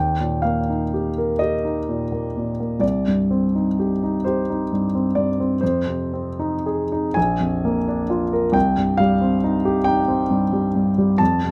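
A solo grand piano, intimate and up front with its action noise audible, plays a tender, serene romantic nocturne in 6/8 with free rubato, reaching from the deep bass to the upper treble under a light reverb in this brief fragment of a longer classical piece.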